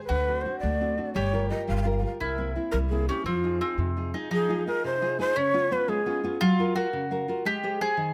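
Romantic and passionate, this brief fragment of Italian folk music sways in 6/8 with a straight feel. A breathy bamboo shakuhachi carries the melody up front, its mellow, end-blown tone marked by vibrato, a crisp attack with chiff, rolled-off highs and an unsteady quality, until it drops out at 6.4 seconds. Beneath it, a full-bodied nylon-string guitar fingerpicks the accompaniment in a deep classical style, with audible finger squeak, while a warm, acoustic bowl-back mandolin adds a picked second line on double strings. A woody, growly upright bass played pizzicato on steel strings supplies a dark, thumpy low end before falling silent at 4.1 seconds. The harmony moves through D7, Gm7b5, C7 and Fm7 before turning to Db7, Gbmaj7 and Abmaj7, all captured by close, detailed microphones in light reverb.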